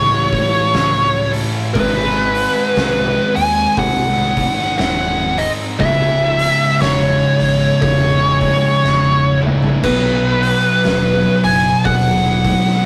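A rough rehearsal-room recording with tube saturation and a moderate stone room reverb gives this short clip of stoner and doom metal a heavy, hypnotic weight. At a crawling 59 BPM in 4/4 with a swung eighth-note feel, in C# minor, the harmony moves from A to G# to C# minor and then to B. Up front, a compressed fuzz lead guitar carries the melody through wah, distortion and slapback echo. Behind it, two thick fuzz guitars grind out a riff in the background, and a very quiet, double-tracked crunchy overdriven guitar adds a bright edge. A growling fingered bass with overdrive anchors the low end, while an oversized low-tuned drum kit with a fat snare, punchy kick, crash, hi-hat and toms sounds dark and gritty, adding a fill at 8.8 seconds. Very quiet in the mix, a reedy tonewheel organ holds sustained chords with key click and a slow rotary speaker.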